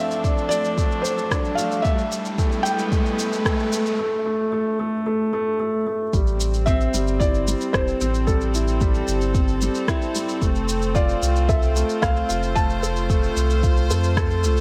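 Light digital reverb gives this cinematic, intimate piano and strings electronica excerpt a close yet airy space. A felt-muted upright piano carries the melody with a soft, hushed tone and audible action noise, while a dark upright piano plays a woody, long-sustaining riff up front, both parts colored by tape echo. A rich chamber string section holds bowed chords with light vibrato and an earthy, smooth top, its sustain pulsing under sidechain pumping. Electronic drums, a deep layered kick with a high-passed shaker and rim click re-recorded in a small room, drive the groove, and a riser sits in the background during the opening build-up. At 6.1 seconds the drop arrives with a round sine sub bass that also pumps, and the piano melody stops at 13.3 seconds as the other parts carry on.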